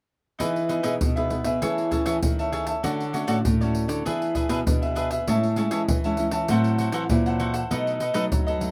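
Recorded outdoors with little reverb, this festive, playful samba and choro excerpt puts a close, dry surdo and pandeiro up front, the tight surdo and hard hands driving a straight four-beat feel. A crisp, picked cavaquinho sits equally forward with the chords, while one nylon-string guitar fingerpicks a small accompaniment on fresh strings and another carries a warm, classical bass line. All four parts play together from 0.4 to 8.7 seconds through a progression that moves from Emaj7 through Am6 to close on B7.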